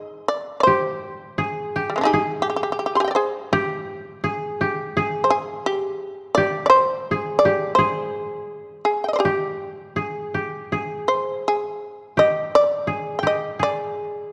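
Japanese traditional chamber music in a calm, austere mood, this short excerpt moves at 84 BPM in 4/4 with a rubato feel, set in G miyako bushi. The bright, buzzing shamisen carries the melody up front across a range from G3 to C6, its plectrum-plucked, fretless attack sounding percussive, while the mellow, woody koto, played with fingerpicks, holds a second line between Eb4 and Ab4. A moderate concert hall reverb frames the dark production throughout the 14.3 seconds.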